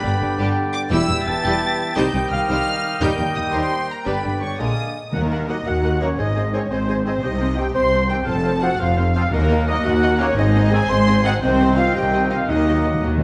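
Swashbuckling and adventurous, this excerpt from a heroic adventure film score moves in a straight 6/8, with a studio violin section carrying the melody in a vibrato-rich, portamento-laden voice over lush symphonic violins, violas, cellos and a focused double bass section. Flute, oboe and clarinet add background lines, while warm French horns and bright trombones hold sustained chords and a dark, distant trumpet section punches out stabs. Timpani struck with hard mallets first enter at 5.1 s, and the whole ensemble sits in a moderate recital hall reverb, with the clarinet and trumpets taking on a particularly roomy glow.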